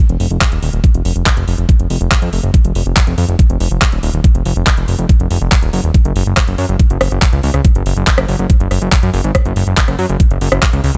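A fat, detuned sawtooth bass with a filter sweep and a garage drum kit of metallic hats, handclaps and rim clicks open this hypnotic, alien psychedelic trance fragment in a digital ambience, joined at 0.4 s by an up-front, knocking electronic kick with a tape-warm character.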